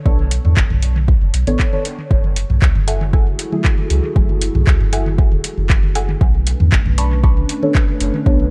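An overdriven, layered kick drum sits up front in this meditative, hazy dub techno excerpt at 117 BPM in 4/4 and F# minor, its deep thump carrying the grain of a small room. Beneath it, a round, soft sub bass built from triangle and square waves holds a sustained low line, colored by tube saturation and sidechain pumping. A vintage rhythm box adds analog handclaps and metallic hi-hats sent into dub echo, while tape-tinged electronic toms pump quietly in the background. A mellow chord stab of detuned sawtooth, triangle and sine layers opens the piece with a filter sweep and moving notch, treated with chorus, phaser and dub echo; it pauses at 4.3 seconds and returns at 7.6. At 2.9 seconds a moody analog pad enters with slow-attack, wave-folded chords and a sub octave, joined by a muted, filter-plucked stab riff in a higher register, both pumping under the sidechain with chorus, as the harmony moves from Bm9 to F#m9 and back within a dark, warm digital ambience.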